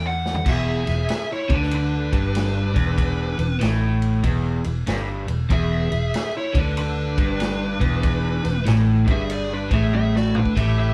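Blues rock with a southern rock flavour, this raunchy, swaggering excerpt from a longer piece swings its eighths as a power trio plays live in a small room, a drum fill opening the way before the band settles onto an E7 at 0.5 seconds. A bright, double-tracked crunchy overdriven guitar riff sits up front over a round, foam-muted fingered bass and a vintage acoustic kit with a punchy kick, medium-tuned snare and rolled-off top, which fills again at 9.9 seconds. Above them a compressed fuzz lead guitar carries the melody while a dark, smooth overdriven lead guitar plays a second line beneath it.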